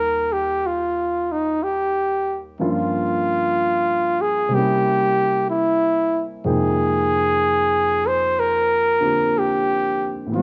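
This jazz ballad drifts at 62 BPM in 4/4 with a gentle swing, its romantic, late-night mood carried by a rich chord progression that moves from Ebmaj9 through Gm7b5 and C7b9 to Fm11. A mellow, breathy trumpet sits up front as the solo voice, sliding into scooped notes with a smooth top. A concert grand piano with a deep, natural bass accompanies it, and the dark, warm production is set in a large studio reverb across this brief passage cut from a longer piece.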